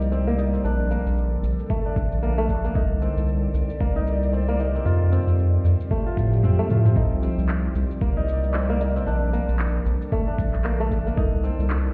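Organic downtempo in C dorian at 114 BPM, this mystical, warm excerpt moves in 4/4 with a gentle swing on the sixteenths. An ethereal, airy pad holds sustained chords through the whole passage, its slow-attack tone shimmering with ensemble chorus, phaser and built-in reverb, and pumping under sidechain. A bright, fingerpicked kora spins ringing arpeggios softened by a low-pass filter and trailed by digital delay, while a round analog bass sits deep and up front, also pumping with the sidechain. An electronic afro-pop kit of handclaps, shaker and toms runs throughout, and a gritty, thumpy overdriven kick enters at 1.7 s, dropping out from 6.4 to 7.0 s as a drum fill takes its place. The chords cycle through Cm7, Bbmaj7 and F, and the whole mix sounds muffled as if heard through a wall, set in a stone room with light digital ambience.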